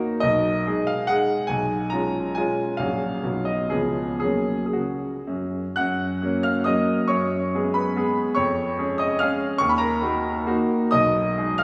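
Classical romantic dance in 3/4 and F# major, a graceful, rustic excerpt cut from a longer piece, moving with a free rubato between 111 and 156 BPM and marked by dotted rhythms. A solo grand piano, brilliant and smooth with a vintage character and long sustain, sits up front and spans A#1 to F#6 as it states the same opening phrase twice, the second beginning at 5.8 seconds. The piano is bathed in a wet, lingering church reverb, and its harmony moves through chords such as G#m/B, C#7 and D#m before settling back on G#m/B near 10.9 seconds.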